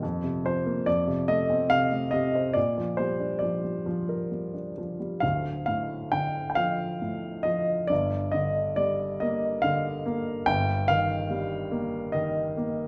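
A warm grand piano carries this short classical passage alone, its notes sitting up front with a short sustain. The mood is peaceful and tender, moving in a lyrical triple metre with uneven beats and a free, rubato feel. The harmony opens on Fsus4 settling into F, then turns to Bb6 before a new section begins at 5.2 s on Dm, passing through Gm and arriving on Eb/G. The playing spans the instrument from a low D1 up to G5, and the piano is tuned slightly high at A4 = 441 Hz. A moderate recital hall reverb surrounds the instrument, giving it a natural sense of space across this brief fragment of a longer piece, which runs to 12.9 s.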